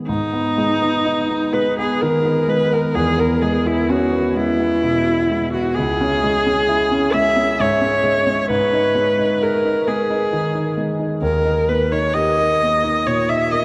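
Classical romantic music for viola and concert grand piano, this fragment from a longer piece is melancholic and yearning, moving at a slow 65 BPM in 3/4 with a flexible, rubato feel in G# minor. The bowed viola carries the melody from 0.1 seconds, a single player with a smooth, even tone, vibrato and a smooth top, sitting up front and slightly louder than the piano. The piano supports it as accompaniment, its warm sound rich with deep bass and short sustain. The harmony moves from G#m through E6 and C#m, back to G#m, and arrives on D# at 11.2 seconds. A cathedral reverb with a 6.3-second decay places the duo in a vast, echoing space, and the sound is rolled off above 11.0 kHz.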